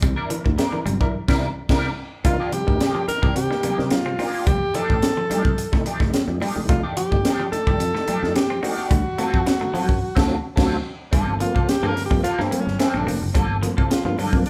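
Hypnotic and sly, this straight 108 BPM funk excerpt sets a punchy, up-front fusion drum kit with a high-tuned snare and a growly fingered electric bass under a twangy, slightly broken-up wah guitar, a clean, compressed semi-hollow guitar riff with spring reverb, and background tonewheel organ stabs carrying key click, light overdrive, chorus vibrato and a slow rotary speaker. Ringing, high-tuned congas sit very quiet beneath it all, while the band plays live in one large studio room with moderate reverb. A smooth-topped alto saxophone with vibrato enters at 2.3 seconds over chords moving from Cm9 through F13 and D7#9, and the band accents at 10.0 seconds before the sax takes a solo over Gm11 from 11.1 seconds.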